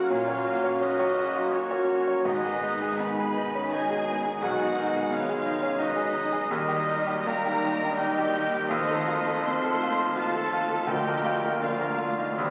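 The rhythm moves in an uneven 3/4 at about 83 BPM, stretched by rubato, in this lush, lyrical classical passage that settles into Bb major at 6.5 s. A clear, smooth grand piano with a vintage character sits up front carrying the melody, joined by a dark studio violin section whose soft-attack, expressive vibrato sings above it. Second lines come from a very quiet, focused chamber violin section, a pure, metal-toned concert flute and a distant oboe in the background, and a roomy clarinet entering at 0.1 s. A very quiet chamber viola section and a bassoon supply accompaniment, while close-miked, mellow French horns and a distant trombone section hold sustained chords. The bass comes from a rich, even cello section and a close double bass section, both very quiet. Wet scoring-stage reverb surrounds the ensemble, and the whole is heard through the crackle of a very old 78 rpm record.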